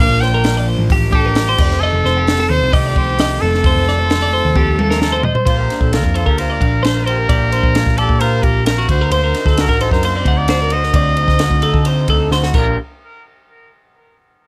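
Bright and intricate, this dry math rock and midwest emo excerpt pairs a clear, vintage pop-style trumpet melody with light vibrato and bright, compressed, twangy twelve-string electric guitar arpeggios, over a round hollow-body short-scale bass and a compact cocktail drum kit with a punchy kick, high-tuned snare and dark cymbals, while a crunchy, double-tracked overdriven guitar riff drops out at 5.2 seconds and, after a drum fill, a slightly broken-up, lo-fi guitar through a small old amp takes over the accompaniment from 5.5 seconds.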